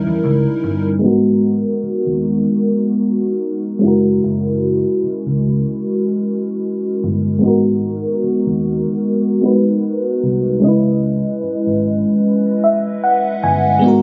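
Longing and moody, this slow R&B excerpt sits at 75 BPM in G# minor with a gentle 16th-note swing, its FM electric piano and soft pad layer carrying lush, dreamy, warbling chords with a detuned chorus shimmer up front over a dark, round, foam-muted electric bass. The harmony opens on D#7b9 before settling into G#m9, F#9 and C#m9 as a filter sweep runs from 1.0 to 13.8 seconds, and the electric piano adds a fill at 12.2 seconds. Captured on a phone in a club-like room, the sound is compressed and low-pass filtered with light reverb, giving it a hazy, intimate character.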